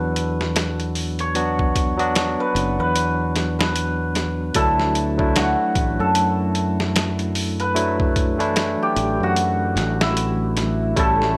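A smoky, hypnotic trip hop excerpt at 75 BPM in a swung 4/4 opens on a shimmering, hammered cimbalom melody carrying dub echo, over a bright, barky tine electric piano with harmonic tremolo and tape echo, and a growly, punchy fingered electric bass with tube saturation, moving from Bm to Dadd9. From 0.2 seconds a gritty, pitched-down boom bap sampler-style kit with a thumpy kick and medium-tuned snare sits up front in studio reverb. At 11.0 seconds a very quiet, mellow string machine cello pad with ensemble chorus slips in with sustained chords just before the cut.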